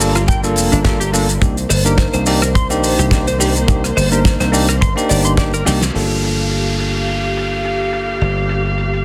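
A punchy, foam-muted thumbed slap bass sits up front in this cosmic, groovy nu-disco excerpt at 106 BPM in G minor, moving from Gm7 to Cm7 over a tight kick, a damped 70s kit with a fat, filtered snare, bell-like tine electric piano through tape echo, and dark, sul tasto strings pumping alongside the bass, while a clean, chorused guitar riff plays until 5.7 s, when a drum fill and band accent lead into an electronic downlifter from 5.9 s, all in a dense, heavily limited mix.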